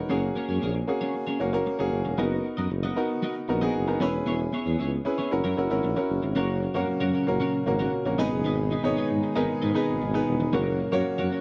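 Pop with a romantic, glossy mood, this short cut from a longer piece pairs a clear, polished concert grand piano playing accompaniment up front with a warm tuba bass carrying light vibrato. A bright, clean twelve-string electric guitar picks a compressed riff colored by analog chorus and tape echo. At 6.4 seconds a shimmering, retro pulse-width pad joins in the background with soft-attack sustained chords, all within a dry, close 1970s-style studio sound.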